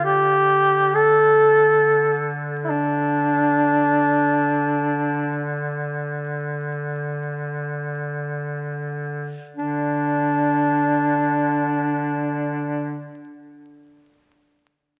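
Caucasian folk lament, longing and solemn, in which an up-front duduk with a clear, vintage tone and vibrato carries the melody over a second, distant and roomy duduk holding a low drone with light vibrato and scooped notes, the playing slowing from 2.7 to 9.6 seconds, with the excerpt heard from further back in the room through a wet plate reverb and a vinyl crackle.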